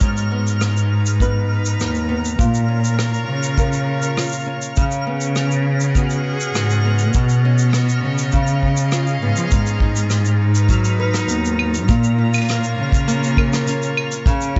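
Intimate and autumnal, this folktronica piece moves at a straight 101 BPM in 4/4, set in G# dorian and cut from a longer work. A small, fingerpicked nylon-string guitar plays arpeggios through tape echo, while a bright string quartet, one bowed player per line with intense vibrato, holds sustained chords above it. Underneath, a single dark, woody cello carries the bass line, sitting up front yet sounding distant. A tight acoustic kick drum and a vintage brush kit with claves, hi-hat, rim click and shaker give a small-room pulse with a rolled-off top. High in the background, a twinkling granular texture with an octave-up shimmer and slow attack sparkles on a single note through its own reverb. The harmony moves from G#m7 through A#m, C#7sus4, Badd9 and C#7 before the second section returns to G#m7 at 9.5 seconds, all in a dry, close mix with a soft, dim top end.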